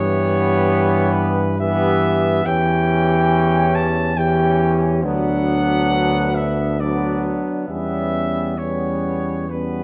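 A roomy, distant cornet with light vibrato carries the yearning melody up front in this elegiac, hymn-like brass band excerpt in a rubato three-four, while a vintage-toned French horn section sings a second line, a clear, tight trombone section and a warm, close-miked solo trombone supply the accompaniment, and a mellow, soft-attacked tuba anchors the bass, heard through a moderate recital hall reverb.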